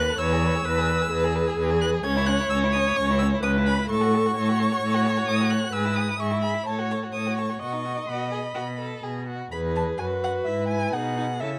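Up front in the mix, the cello carries the bass line with a rich, expressive tone, its soft attacks, vibrato and portamento giving weight to this quick, graceful classical-period movement for string quartet in E major at 130 BPM in a straight 4/4. Above it, the first violin sings the melody high in its range with a dark, smooth-topped sound, shaping phrases with vibrato, gentle attacks and sliding portamento. The second violin sits more distant, playing an even, smooth second line in its middle register, while the viola fills in the accompaniment with a warm, even tone and vibrato. The lively harmony moves from E through C#m, F#m/A and E/G# to a B chord, arriving back on E as a new section begins at 9.5 seconds. The recording is close and detailed with little reverb, capturing each bowed player clearly in this short cut from a longer piece that ends at 11.6 seconds.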